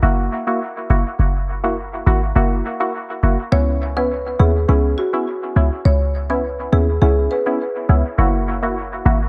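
An echo-heavy mix with a light studio reverb gives this short dancehall cut from a longer piece a sultry, bouncy character in a straight four-beat feel. A punchy, tight 808-style bass with a sine tone and a noise layer sits up front from the start, its fast attack decaying under the groove. Alongside it, a digital wavetable chord stab, crisp yet mellow, uses detuned unison voices and a filter sweep, with dub echo trailing each decaying hit. At 3.5 seconds a woody marimba played with medium mallets on rosewood bars enters with a warm melody, also soaked in dub echo, before dropping out at 7.4 seconds. Beneath it the harmony moves from F#7 to C#m7 and back to F#7 near the end.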